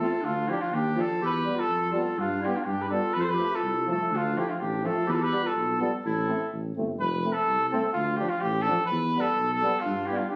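Heard through a phone in the room, with moderate studio reverb and compression, this passage is cut from a longer piece of Balkan folk in a straight duple metre, restless and bittersweet. A warm flugelhorn with light vibrato carries the melody up front in a classical style, though its tone sounds distant and roomy. A mellow, smooth-topped clarinet plays a second line, dropping out at 6.5 seconds and returning at 9.8. Behind them, a clear, present trombone sits in the background as accompaniment, joined by a euphonium with vibrato set back in the space. A dark tuba with a slight vibrato stands prominently in the bass, over chords moving through D minor, E minor, G, F and A minor, and the opening phrase begins again at 7.0 seconds.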